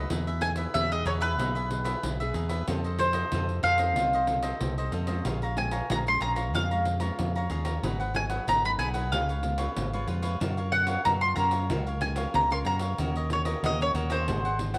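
Bright, crisp picked cavaquinho, a classical fingerpicked nylon-string guitar in the background and an up-front electric bass shaped by an envelope filter open this nostalgic, yearning samba-and-choro excerpt; a jingly, distant pandeiro played with hard hands joins almost at once, and from 0.4 seconds a round, double-stringed mandolin carries the melody up front, in a moderate echo-chamber reverb over chords moving from Emaj7 through Bbm7 and Gbmaj7 to Ab7.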